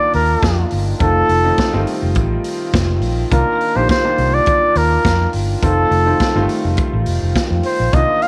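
A glamorous, driving disco excerpt opens with an up-front flugelhorn singing the melody with light vibrato and scooped notes, over intimate concert grand piano with audible action noise and a mellow French horn section holding tight sustained chords in the background, while a dark, round fingered electric bass and a vintage acoustic kit of punchy kick, snare and hi-hat join at 0.1 seconds as the harmony alternates between Cm11 and F7 in a small room with light reverb.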